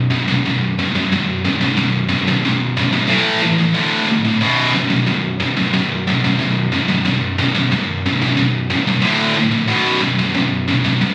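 Captured on a phone in a nearly dry room with the top end cut off above 10.7 kHz, this short metal cut from a longer piece features a lone heavy high-gain electric guitar, bright, scooped, double-tracked and up front, picking distorted power chords through B5, A5 and D5 in B minor at a relentless, straight 91 BPM in 4/4, tuned to A4 = 442 Hz, for its full 11.1 seconds.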